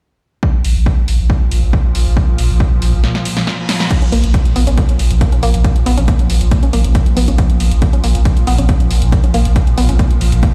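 A driving peak-time techno groove at 138 BPM in straight 4/4 and Bb minor, hypnotic and relentless, with a punchy, tape-warm electronic kick and a deep, saturated sub bass up front, joined by an analog drum machine's crash, hi-hat and snare, its hats and crash pumping against the kick. A swarming, detuned drone swells in slowly from 1.1 seconds with granular, ring-modulated grit and built-in reverb. A break with a drum fill at 3.0 seconds and a very quiet reverse cymbal at 3.3 seconds lead into the next section at 3.9 seconds, where a bright, round analog pluck riff enters with chorus and dub echo. The whole cut sounds as if played on a big sound system in a bare stone room.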